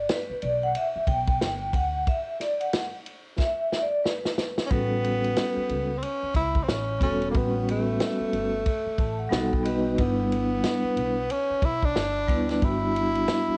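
A ringing, metallic vibraphone with fast motor vibrato opens this nocturnal, smoky jazz-hop excerpt at 91 BPM, taking a solo turn over woody, thumpy pizzicato upright bass and a vintage drum kit of punchy kick, medium-tuned snare and dark cymbals roughened by 12-bit sampler grit, with a drum fill leading into 4.7 seconds. There a breathy tenor saxophone steps up front with light vibrato and scooped notes, bathed in tape echo and plate reverb, while the vibraphone adds a fill around 8.7 seconds as the swung groove moves from Gmaj13 through A13 and B7b13 to Em7/G. Cassette tape colours the vibraphone, drums and saxophone, giving this home recording a hazy, softened top.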